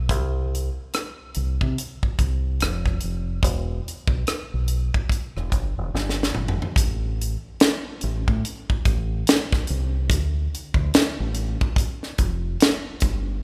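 Lightly reverberant, this smooth, sultry neo-soul and R&B groove pairs a dark, round fingered electric bass, direct and amped, with a tight, natural-sounding acoustic funk kit in a small room, both sitting up front. The kit's high-tuned snare, tight kick, hi-hat, rim clicks and toms ride a swung-sixteenth feel over the low bass. A drum fill from 5.9 to 6.8 seconds carries the groove into a new section of this passage cut from a longer piece.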